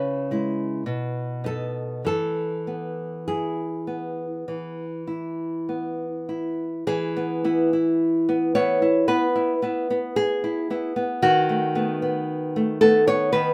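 A serene, romantic excerpt in E major opens with two fingerpicked nylon-string guitars together: a soft, full-bodied, deep classical melody voice that sings between G#4 and B4 until 6.2 s, and a bright, small, up-front accompaniment ranging from B2 to C#5 that carries on alone through 13.5 s, moving gently from C#m through B7 to E and later B7/D# at a rubato 48-58 BPM in 4/4, all in light reverb.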